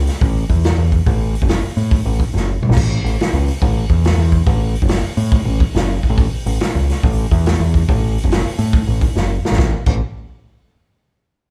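Blues rock in a power-trio vein with a southern rock streak, this short cut from a longer piece has a gritty, raunchy mood and a swung feel in 4/4. A growling picked electric bass carries the low end, overdriven and punchy, sitting up front with a direct-and-amped character across the whole passage. A vintage acoustic drum kit plays alongside it, with a medium-tuned snare, a punchy kick, hi-hat, crash cymbal and toms, its top end rolled off for a warm, natural sound. Drum fills mark the turns at 2.3 and 9.2 seconds, the second leading into a new section near the close. The band sounds as if it is playing live in one room, wrapped in a moderate large-studio reverb that gives the up-front parts a sense of space.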